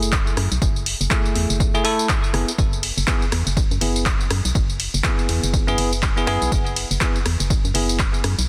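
A dense, heavily limited modern master with light reverb opens this short deep house excerpt, smooth and warm, moving at 122 BPM in 4/4 with a 58% swing on the 16ths in F# minor. A punchy, dry analog drum machine sits up front with handclaps, hi-hat, ride cymbal, rim click and tambourine, while a separate electronic kick drum enters at 0.1 seconds, both carrying studio reverb. Beneath them, a hollow, organ-like FM bass with a fast attack and dark, decaying tone holds the low end between F#1 and F#2, pumping against the sidechain. A bell-like tine electric piano plays bright, clean stabs between A3 and A4, treated with delay and the same sidechain pumping, until it stops at 8.0 seconds. The harmony moves from F#m9 to F#9sus4 at 2.3 seconds, giving the passage a suspended colour.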